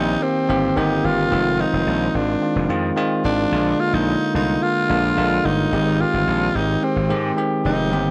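Nostalgic and dramatic, this short cut from a longer 1980s-style pop piece moves in a straight 4/4 over a Cm7, Fm7, Bb7 and Abmaj7 progression. A growling, breathy tenor saxophone carries the melody with light vibrato and tape echo, while a bell-like tine electric piano supplies clean accompaniment and an overdriven slap bass adds punchy grit underneath. All three parts play together from start to finish in a dry, close 1970s-style studio sound with light reverb.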